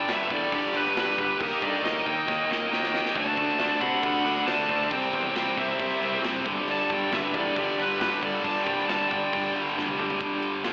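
A straight 4/4 pulse at 136 BPM drives this energetic, powerful hard rock excerpt, where a dark, high-gain lead guitar with digital delay carries the melody over a fuzz lead's second line. Beneath them, a bright, up-front overdriven guitar with slapback echo plays the riff across G5, Eb, D and C, joined at 3.2 seconds by a warmer overdriven guitar in the background, while a growly picked bass and a big acoustic kit with a punchy kick hold the groove, the kit adding fills at 2.3 and 9.8 seconds. The whole mix sounds like a live gig heard through the venue's PA, with recital-hall reverb and an AM-radio sound.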